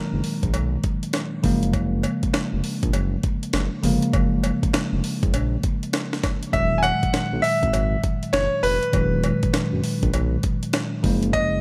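With light reverb across a short cut of upbeat, bouncy new jack swing R&B, a compressed, gritty, pitched-up breakbeat kit with a thumpy kick and high-tuned snare drives a swung groove alongside a smooth sawtooth synth bass with vibrato, a bell-like, clean tine electric piano accompanying on chords that move between Emaj9#11 and F#maj9, and a metallic cowbell sitting low in the mix, while a brilliant, polished concert grand piano with delay sounds its melody briefly at the start and returns at 6.5 seconds.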